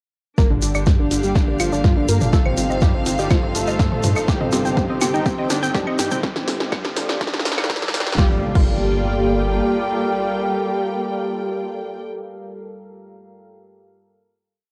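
An overdriven, punchy electronic kick drives this melancholic, dramatic melodic techno piece in G minor at 123 BPM. It is joined by an analog drum machine's snare, hi-hat, claves, toms and crash, a grainy hand-played shekere, and a rumbling, detuned sawtooth bass sequenced in sixteenths. A thick, bold unison lead with vibrato and 12-bit sampler grit repeats its riff over a pedal note, doubled an octave lower by a very quiet, smooth supersaw, while a lush, noise-layered pluck arpeggio, a moody pad with chorus and slow attack, and a bowed studio string section pump with sidechain through a build of filter sweeps and a drum fill; quiet riser and impact effects enter at 4.2 seconds, and at 8.2 seconds the build gives way to a final Gm7 chord, all under a cassette home-recording haze with light reverb.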